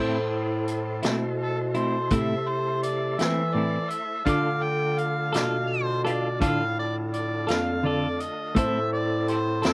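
This smoky, mournful slow blues in A minor opens with a clean, picked electric guitar shimmering with tremolo and compressed up front, alongside a barky, overdriven tine electric piano pushed through a combo amp. A smooth tonewheel organ holds sustained chords turning on a slow rotary speaker, while a dark bass clarinet carries the bass line with subtone, light vibrato and scooped notes in a jazz style. A vintage drum kit enters at 0.7 seconds with hi-hat, a tight kick and a medium-tuned snare, its rolled-off top sitting mid-forward in a studio room. At 1.4 seconds a gritty, amplified harmonica takes the melody up front, adding tongue slaps, scooped notes and light vibrato. The 12/8 groove moves at 56 beats per minute from Am to Dm and back, heard in a rough home demo mix with little reverb, cut from a longer piece.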